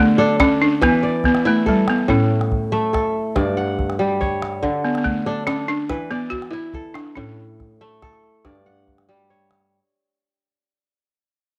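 West African traditional music for strings and xylophone, this short excerpt moves with a flowing, joyful lilt at 94 BPM in a straight 12/8. A balafon carries the melody up front, its woody, dry tone struck with hard rubber mallets and edged with a buzzing rattle, colored by the soft grain of cassette tape. Alongside it, a kora spins fingerpicked arpeggios from G2 up to F#5, sounding crisp and ringing close to the listener. A deep calabash keeps the pulse from 0.2 seconds with a live-room acoustic, sitting further back in the blend. The harmony cycles through D5, E5, A and G5 chords, and a fade-out runs through the passage, with the balafon stopping at 7.8 seconds and the kora ringing on until 10.4 seconds. Light studio reverb frames this home cassette recording, lending it an intimate, lived-in character.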